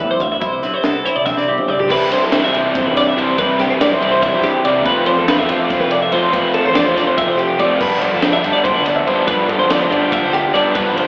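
A clean, fingered twangy guitar with phaser and a bright, compressed twelve-string guitar playing echoing arpeggios open this playful, intricate math rock and midwest emo piece in 7/8, over a growling overdriven bass and a compact cocktail kit with a dark, rolled-off top, high-tuned snare and punchy kick that enters at 0.2 seconds; after a drum fill, a crunchy, double-tracked overdriven guitar riff takes over from the twangy guitar at 1.9 seconds as the chords move from Cmaj7 through Fmaj7 to G7sus4, all heard in the small room like a live gig through the venue's PA, with club reverb and an AM radio tint.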